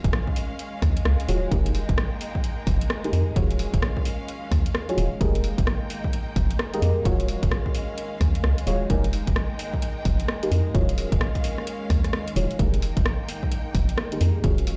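A dry, punchy analog kick sits up front in this late-night, soulful two-step UK garage excerpt at 130 BPM in F minor, swung on the sixteenths, alongside a hollow, bouncy FM bass, a small-room garage kit of warm hi-hats and rim clicks, deep mellow chord stabs colored by chorus, phaser, cassette tape and tape echo, and a lush, distant violin section pumping under sidechain, while a moody, warbling ambient pad fades in throughout as Ebm11 and Fm11 alternate beneath a light reverb.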